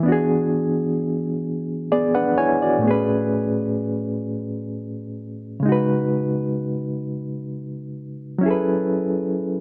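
Lightly reverberant, this yearning, sultry R&B fragment in a slow 6/8 at 43 BPM, counted in dotted quarters, features a lone reed electric piano, barky and bright with light overdrive and a fast tremolo through its built-in speakers, sitting up front as it moves through E7, Amaj7, C#7sus4 and F#m11, with a brief fill from 1.5 to 2.9 seconds.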